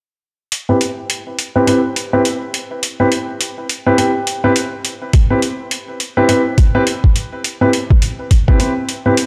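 A gritty, sampler-style electronic hi-hat opens this funky, swaggering glitch hop passage with a swung sixteenth-note feel, joined almost at once by dark, mellow grand piano stabs sitting up front in the mix. The vintage-toned piano plays within a narrow middle register over a Cmaj7 harmony, shaped by sidechain pumping, a low-pass filter and digital delay, with a filter sweep running across its whole span. At 5.1 seconds a thumpy, compressed electronic kick drum arrives, the loudest part, re-recorded in a large room like the hi-hat, lending weight to the groove until 8.6 seconds. A moderate, lush hall reverb envelops the dark production, giving the short clip from a longer piece a smooth, cushioned depth.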